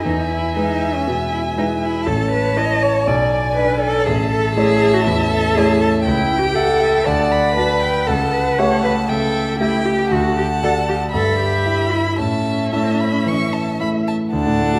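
At 118 BPM in 4/4, this quick classical-period movement for piano quartet moves with a supple rubato feel, graceful and cheerful in mood. One violin carries the melody between G5 and C#6, its warm, bowed tone placed close, with vibrato, soft attacks, portamento and expressive shading. A second violin sits farther back with the same bowed vibrato and portamento, while a rich-toned cello shapes its own second line from B3 to D#5. Beneath them, a clear concert grand piano sits up front, playing the accompaniment with a natural sound and deep bass reaching down to A1. The four players sound together from 0.0 to 14.8 seconds, moving from E through A, G#dim/B, A7/C# and D before settling back on A, all within a recital hall reverb of about 1.8 seconds that gives this fragment of a longer piece an airy, wet space.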